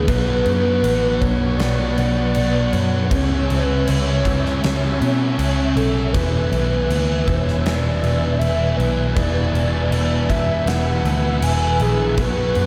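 Dreamy and hazy, this short cut from a longer shoegaze and dream pop track drifts at a straight 79 BPM 4/4 pulse through a lush hall reverb that soaks the whole mix. A reedy, woody FM lead carries the melody with vibrato, chorus and tape echo, while a mellow string machine voiced as violas holds soft-attack sustained chords under an ensemble chorus. Up front, a thick, dark fuzz guitar grinds out a riff alongside a round, foam-muted vintage bass, and a bright, clean direct-recorded guitar riff sits barely audible beneath them. A huge arena drum kit joins at 0.1 s with a punchy kick, fat snare and bright crash cymbals. The harmony moves from Bmadd9 to C#m at 3.1 s and settles on E at 6.1 s.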